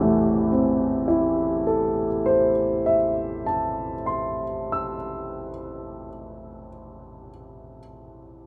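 A moderate reverb from a large studio surrounds this recording, and the sound lingers for about a second after each note. It is a short fragment of a romantic classical nocturne for a warm upright piano playing alone from the start to 8.5 seconds. The piano sits up front with a woody tone and long sustain, and it ranges from deep A1 up to E6. The piece is in A minor, opening on an A minor chord, and moves in a slow 12/8 at 28 beats per minute in dotted quarters. The timing is freely stretched in rubato, giving the music a yearning, mournful feel.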